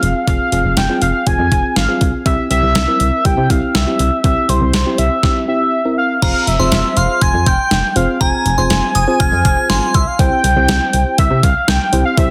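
Synth-pop in F harmonic minor at 121 BPM, this short cut from a longer piece carries a nocturnal, melancholic mood over a straight 4/4 pulse, moving from Fm to C in each half. An octave-doubled lead sits up front with the melody, its bold, retro blend of sawtooth and triangle colored by chorus, vibrato and delay. Beneath it, a mellow FM electric piano supplies soft, warbling accompaniment with a noise layer and chorus, while a solid FM bass gives punchy, round, dark low notes. The clean 12-bit digital drum machine, with its thumpy kick, medium-tuned snare, hi-hat and crash, is overdriven and re-recorded in a large room, and it sits up front in the mix. At 6.2 seconds a glassy synth bell adds a crystalline, bright second line with chorus and delay, dropping out at 10.0 seconds. Light reverb surrounds a dense, heavily limited modern master.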